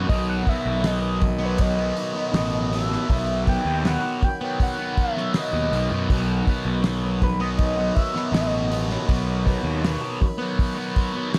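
A dark, mysterious psychedelic rock passage in B major at a slow 80 BPM opens with a reedy pedal harmonium holding sustained chords in the background, a thick, double-tracked fuzz guitar riff colored by phaser, and a punchy overdriven fuzz bass, joined within a moment by a cloth-damped, thuddy drum kit with a fat snare and tight kick sitting dry and up front. Over them a gritty, screaming synth lead with chorus, vibrato and analog delay carries the melody until 8.9 seconds, while the bass drops out at 10.0 seconds and the rest continues in a small room with light reverb.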